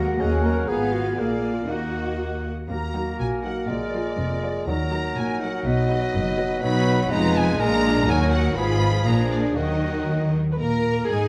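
Stormy and restless, this quick classical-period orchestral excerpt in Eb minor at 122 BPM sets a lush violin section's melody over a second violin line, oboe, mellow clarinet and an airy flute group, with a clear bassoon and viola section in accompaniment, background French horns sustaining chords, and a dark double bass section under a close, portamento-inflected cello section carrying the bass, all in a dark recital hall with a reverberant glow, where the winds fall away at 10.3 seconds and the strings and horns hold on to 11.3 seconds.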